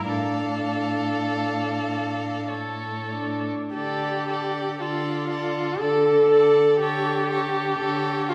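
This is a slow, romantic classical movement for string quartet in triple time, played with a flexible, rubato pulse and a melancholic, yearning mood. It is a short cut of about 8.3 seconds from a longer piece. The first violin carries the melody in a rich, focused voice with vibrato, and the second violin adds a warm, polished second line just beneath it. The viola sits up front in the balance with an even, silken accompaniment, while a single cello anchors the bass with a full, steady bowed tone. Each of the four bowed parts is played by one player with vibrato. The quartet is heard from further back in a resonant recital hall, its reverb lingering around the harmony as it moves from Dm/A to Dm and then to A7/D near 6.8 seconds.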